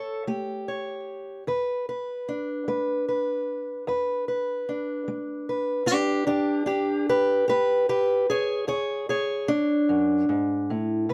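A boxy, up-front parlour steel-string acoustic guitar, fingerpicked alone from 0.0 to 11.1 s across a range of E2 to C#5, carries this soulful, rollicking acoustic country blues snippet in E mixolydian at 50 BPM in a straight 12/8, moving from A7 to E7 at 1.5 s under light reverb, tuned to A4 = 439 Hz and cut from a longer piece.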